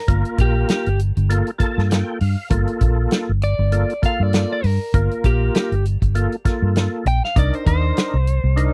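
A lightly driven, slightly broken-up electric guitar opens the track at 0.0 seconds with a compressed, picked solo, joined almost at once by a gritty, overdriven tonewheel organ through a slow rotary speaker and chorus vibrato, which plays a fill from 1.3 to 2.5 seconds. Underneath, a dark, foam-muted fingered bass with a round, punchy tone and a dry, mid-forward soul drum kit with a punchy kick and rolled-off top sit up front, driving a smoky, soulful straight-eighth blues groove at 99 BPM in G minor. The close, dry 1970s-style studio sound holds on Gm9 before shifting to Cm9 at 7.4 seconds.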